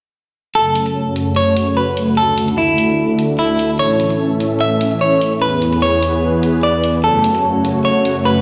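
A clean, dark semi-hollow electric guitar sits up front with a fingered melody, its hollow-body tone passed through a digital delay from 0.6 to 8.4 seconds. Alongside it, a lush, up-front supersaw pad of detuned sawtooth unison voices holds sustained chords with a soft attack and long release, while a low-pass filter sweep shapes its bright sound throughout. Overdriven electronic hi-hats enter at 0.8 seconds, layered and sitting lower in the mix, with a gritty small-room character. The harmony cycles through F#m, D, A and E before returning to F#m, giving this heavy, chaotic wobble dubstep fragment a half-time feel. A moderate, lush hall reverb and the sound of a big system playing in a large, bare room surround the whole piece, which is cut from a longer track.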